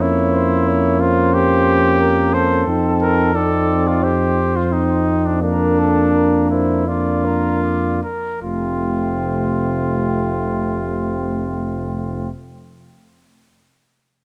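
A stately, triumphant classical brass quintet fragment opens with all five players together: a warm trumpet carries the melody up front, a flugelhorn with light vibrato sings a distant second line, a clear, distant, roomy trombone and a dark, smooth-topped French horn in the background fill in the accompaniment, and a mellow tuba anchors the bass up front, as the music slows from 1.3 to 8.4 seconds before settling into a new section, all in a close, detailed sound with light reverb.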